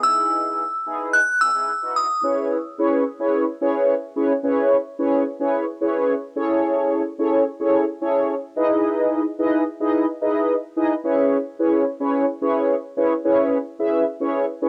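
This bittersweet yet confident pop fragment opens with a glassy, crystalline FM synth bell carrying a brief melody through the build-up, dressed in chorus and analog delay until it stops at 2.2 s, while an up-front, round, detuned synth brass with dark vibrato, chorus and cassette-tape colour sustains the chords from Emaj7 into a C#m7 drop and on through Amaj7, Emaj7 and back to C#m7 until 14.7 s, the whole heard in a small, wet booth on a home cassette recording.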